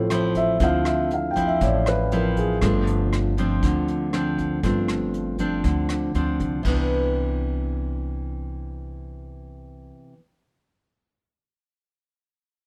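A close, detailed recording with little reverb opens this short bossa nova excerpt in C major, moving at 119 BPM in a straight 4/4 with a breezy, romantic mood. A dark baby grand piano takes the solo from the start, its mellow, intimate tone carrying long sustain and audible action noise over chords moving from Dm9 to G7sus4. Beneath it, a fingerpicked nylon-string guitar sits up front with a classical warmth, while a pizzicato upright bass on gut strings adds a woody, thumpy low end. A vintage brush drum kit, recorded in a small room with a rolled-off top, keeps time with dark cymbals, hi-hat, rim click and a punchy kick. The piano and drums fall away near 6.7 seconds as the harmony settles on Cmaj9, leaving guitar and bass to carry the closing passage, with the guitar lingering alone until 10.2 seconds.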